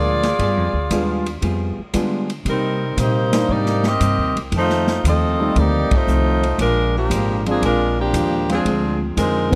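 Brassy and energetic, this big band swing excerpt opens with an edgy, close-miked saxophone section carrying the melody up front with light vibrato and a touch of tape echo, over clean picked hollow-body jazz guitar, woody pizzicato upright bass and a drum kit with dark cymbals and a punchy kick. A concert grand piano with deep bass and short sustain joins at 0.9 seconds in the background, and the band hits an accent at 5.8 seconds as the chords move through G7b9, Cm7, F7 and Bb7. Within the dry, close studio sound, a clear trombone section enters at the very end, around 9.5 seconds, taking a second line.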